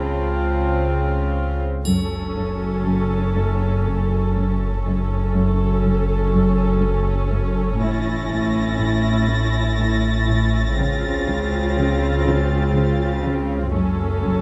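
This cinematic suspense film score excerpt moves slowly at 61 BPM in 3/4, mysterious and eerie, as bowed sul tasto strings float over a deep, ominous, rumbling synth drone with its own built-in reverb, with a rich double bass section and a soft-attack cello section underneath and a pure viola section in the middle. From 1.9 s a second, intimate cello section plays a riff with light vibrato in the background, and a close, dry triangle sounds briefly until 3.8 s. A smooth-topped violin section adds high texture at the start and again from 7.8 s, all set in a moderate stone room with close, detailed microphones over chords moving from C#maj7 to F#m and A.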